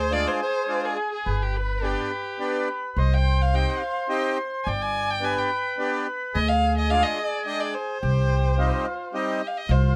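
A warm, expressive bowed violin leads this bittersweet, soulful klezmer fragment in 3/4 and C harmonic minor, singing its melody up front with vibrato and portamento over a tempo of 107 BPM that gradually speeds up. A mellow, dry accordion traces a second line beneath it, while a reedy, rich accordion fills in the accompaniment through chords moving from Ddim to G and Cm. A woody pizzicato upright bass anchors the low end, and the close, detailed recording carries little reverb.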